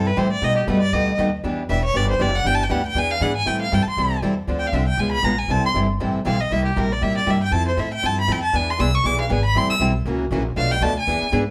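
A bowed violin leads this fast, swinging jazz manouche piece at 236 BPM, playing a virtuosic solo with rich vibrato and expressive portamento over two picked steel-string acoustic guitars and a woody, thumpy pizzicato upright bass on gut strings. The key moves from E minor to A minor at 3.5 s, and the chords pass through B7alt, Em7, Am7, C#7 and Fmaj7 before landing on Bm7b5. One guitar rings with fresh strings and finger squeak, while a boxy parlour guitar sits in the background, and a moderate studio reverb surrounds the group.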